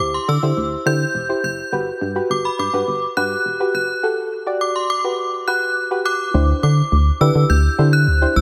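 This confident, energetic dance-pop clip opens with all three parts at once at a straight 104 BPM in 4/4. A chiming, inharmonic FM synth carries the melody high above, its ringing notes given a long release, an ensemble chorus and a tape echo. Beneath it, a soft, gentle pluck with a wave-folded, filtered tone and its own chorus plays the accompaniment, while a punchy, digital FM bass with a dark, fast-attack sound sits up front. The harmony moves from D9sus4 to Gmaj7 at 1.7 seconds through a build-up, then returns to D9sus4 as the drop lands at 6.3 seconds. A lush hall reverb and a high-pass filter soak the mix in a dreamy haze, and the passage is cut from a longer piece.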